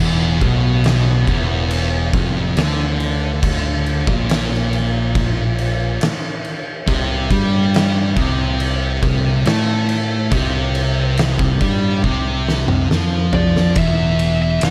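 The recording is dry and close, with little reverb, and this short cut from a longer stoner and doom metal piece feels sludgy and ominous at a slow, straight four-beat pace. Two thick fuzz guitars grind out the riff from the first moment, one dark and set back in the mix, the other warmer, moving from an E power chord to a C power chord at 6.9 seconds. A picked electric bass holds down the low end with a growly, punchy overdriven tone. An oversized, low-tuned acoustic drum kit sits up front in a bright stone room, its fat snare and boomy kick saturated and gritty under a rolled-off top, with crash, ride and toms adding weight and a fill driving the close of the section. At 13.3 seconds a compressed fuzz lead guitar enters high above, its melody trailed by digital delay as the chords drop away.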